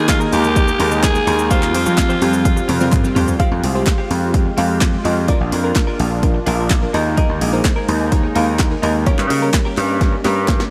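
A raspy alto saxophone opens this driving, bittersweet dance-pop excerpt in F minor at 127 BPM, its gritty, edgy tone carrying a light vibrato and a tape echo before it drops out at 2.9 seconds. Beneath it, a punchy analog drum machine with overdriven kick and snare, hi-hat, shaker, toms and handclaps sits up front alongside a bright, overdriven slap bass, both driving the straight 4/4 groove. Glassy digital keys and a sweeping, detuned sawtooth pad fill the background with chorus and sidechain pumping, while a clean, direct-recorded electric guitar picks a compressed riff through a lush chorus. A very quiet, hollow square-wave pluck bounces through arpeggios at the start, and a close, dry group handclap adds a human touch far back in the mix. From 3.4 seconds a soft, dark, rounded pluck takes over the melody with chorus and tape echo, as the harmony moves from Fmadd9 through Bb and Ebsus4 to a tense Gdim, with drum fills marking each section's end under a light reverb.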